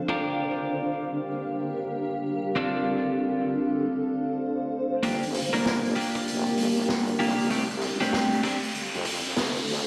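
A lush, wet hall reverb surrounds this gritty, funky glitch hop excerpt, which sounds as though it is played through a big sound system in a bare stone room. At 97 BPM in 4/4 with a swung sixteenth feel in G minor, it opens on an up-front electric guitar at the edge of break-up, playing picked, compressed stabs through analog chorus, dub echo and sidechain pumping, while a cloudy, evolving granular pad drifts up front beside it with its own built-in reverb. The harmony moves from Gm7 to Dm7, then returns to Gm7 and shifts to F6. At 5.0 seconds a build-up and filter sweep begin, and a heavy, saturated wobble bass enters with a sawtooth-and-sine mix, chorus and a high-pass filter. Alongside it come a knocking, layered electronic kick in the background and an up-front vintage drum kit of hi-hat, rim click and a medium-tuned snare with a rolled-off top. An electronic riser joins at 7.1 seconds and carries the build to the end of the cut.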